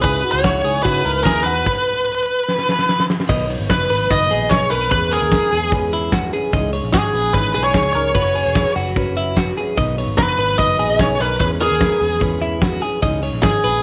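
A distorted, high-gain lead guitar sits up front carrying the melody over a breezy, bright jangly indie pop groove in B major at 148 BPM, cut from a longer piece. Beneath it, a twangy, compressed twelve-string electric guitar plays arpeggios, a full-bodied jumbo acoustic guitar is fingerpicked in accompaniment, and a round, foam-muted vintage bass plays alongside a big rock kit with a fat snare and punchy kick. After a drum fill ending at 3.3 seconds, a jingly tambourine enters in the background, and the moderate plate reverb and small room ambience give the mix some air.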